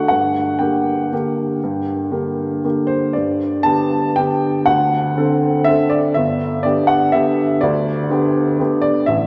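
A classical piano waltz in three, elegant and wistful, played solo on a woody, vintage-toned upright piano with long sustain that sits up front. The timing is loose and rubato, and a new section opens at 3.2 s, running to the end of this short excerpt at 9.3 s. A wet cathedral reverb with a five-second tail surrounds the piano in a church-like hall, and the top end is softly rolled off.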